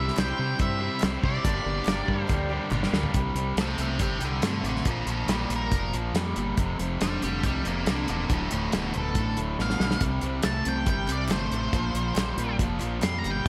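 A dark, fuzz-drenched lead guitar with tape echo solos from 3.2 seconds over a swaggering, brooding classic rock groove, carried by a bright distorted riff guitar, a background overdriven semi-hollow guitar, a round, punchy fingered bass, a dry, up-front 70s drum kit with fills, a shimmering twelve-string acoustic that plays only until 3.2 seconds, and very quiet crisp group handclaps, all set in a lush hall reverb for a big arena sound.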